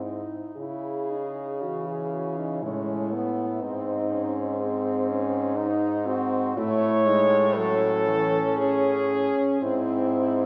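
Classical and lyrical, this melancholic, solemn passage for horn quartet moves at 60 BPM in 3/4 with a rubato, unevenly paced pulse in C# minor, with chords passing from G# to C#m, G# and Amaj7. Four French horns play together from 0.0 to 10.5 seconds: a warm lead horn carries the melody up front with light vibrato, a mellow horn with a smooth top and light vibrato holds the accompaniment, and clear-toned horns take the second line and the bass, the bass also with light vibrato. The melody, second line and bass sound distant and roomy, and the whole quartet sits in the wet reverb of a scoring stage with a 1.9-second decay.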